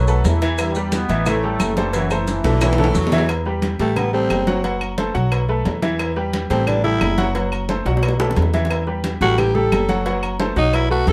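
Lightly reverberant and fiery, this driving salsa excerpt in E minor at 177 BPM opens with a distant, roomy trombone section carrying the melody over a clear, present grand piano and a dark, thumpy pizzicato upright bass, with a punchy saxophone section briefly adding a second line before a raspy, growling tenor saxophone takes an up-front solo from 3.3 seconds, all set against background percussion of damped vintage congas, tight high-tuned cowbell and bongos, ringing metal-shell timbales and agogo bells, woody claves, and grainy maracas, with drum fills at 2.3 and 7.9 seconds.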